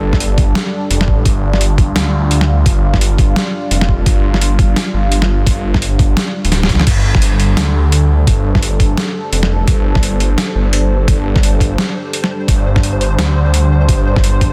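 A swung, half-time drum and bass groove drives this tense, spacious cut from a longer piece, with a gritty, pitched-down sampler-style kit of hi-hat, snare and crash sitting over an overdriven, thumpy electronic kick. Up front, a swirling, saturated detuned saw bass churns through its phaser, while a dark, moody analog pad sustains slow-attack chords beneath, carrying chorus, 12-bit sampler grit and sidechain pumping. After a drum fill and band accent near 6.8 seconds, a faint pulsing gated texture enters at 6.9 seconds, tempo-synced and carrying chorus and its own built-in reverb, within a dry, dense, heavily limited mix.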